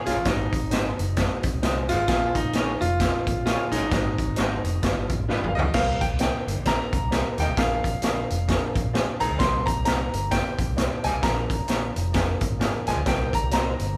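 Uptempo 1960s-style soul with a driving, urgent swing, cut from a longer piece and played live in one room with a moderate large studio reverb. A brilliant baby grand piano carries the melody over a gritty, saturated garage drum kit with a punchy kick, a dark, round muted electric bass, and a woody upright piano. Very quietly beneath them sit a fat, lightly overdriven tonewheel organ with key click and slow rotary speaker, and a smooth horn section with light vibrato. A slightly broken-up electric guitar adds stabs in the background until 5.5 s and returns briefly near the end, while a drum fill at 5.3 s leads the band into a minor-key turn at 5.7 s.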